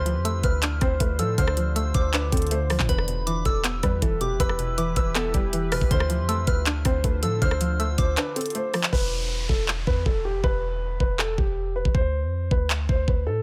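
Opening on a dark, mellow grand piano melody with audible action noise, a soft FM synth bell line, a twangy string-like resonator pluck and a deep, moody ambient pad in the background over a boomy 808-style bass, this melancholic, hard-hitting half-time trap excerpt at 159 BPM in E phrygian brings in an up-front trap drum kit with knocking kick, bright hats, handclaps and rim clicks, then after a break at 8.2 seconds drops the bell, pluck and pad and mutes the hats from 8.9 seconds as an electronic downlifter sounds until 11.9 seconds beneath the piano and bass.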